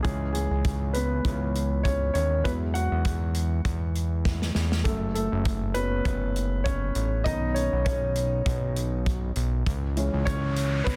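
A grand piano carries the lead from the start with an up-front tone over a fat, detuned sawtooth analog bass with a filter sweep and a natural acoustic country drum kit with a punchy kick, setting a warm, anthemic piano-driven pop groove at 100 BPM in 4/4 with a gentle 16th-note swing in E major, cycling through C#m, Eadd9, F#m and Badd9, with a drum fill at 4.3 seconds and an electronic riser entering at 10.1 seconds, set in light small-room reverb and a dense, heavily limited modern master.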